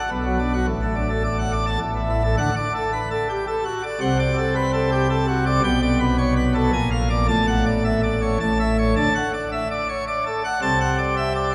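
Brilliant and jubilant, this short passage from a longer classical organ toccata moves in a straight triple metre. A solo pipe organ plays on a full plenum registration with mixtures, giving a bright baroque voicing and a crisp chiff at the start of each note, and it sits up front in the mix. Its range stretches from a deep A1 to A5 at the top. An opening phrase over B minor and a D chord gives way at 2.4 seconds to a longer second section that passes through a D7 over C, a G chord and a striking B-flat seventh before returning to D and moving on to a D7 over C. The organ rings out in a cathedral-like church acoustic, with a reverb tail of about 4.4 seconds lending the sound a grand, spacious bloom.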